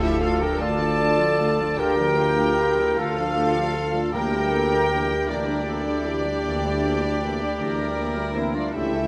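A slow, rubato orchestral passage in 12/8 opens at once with the full ensemble, its yearning, melancholic melody carried by a close, intimate studio violin section played sul tasto with light vibrato and a soft attack. Around it, a pure concert flute, a mellow, vintage-toned clarinet and a very quiet chamber violin section weave second lines. A dark, woody viola section supplies accompaniment while a French horn section holds sustained chords in the background. A distant, roomy trumpet section adds soft-edged stabs, and the bass is built from a floating cello section, a double bass section and a solo tuba. A barely audible timpani with soft mallets adds a round, soft presence until 5.3 seconds, while the harmony moves from D minor to E half-diminished over D at 4.1 seconds, all within a generous concert hall reverb.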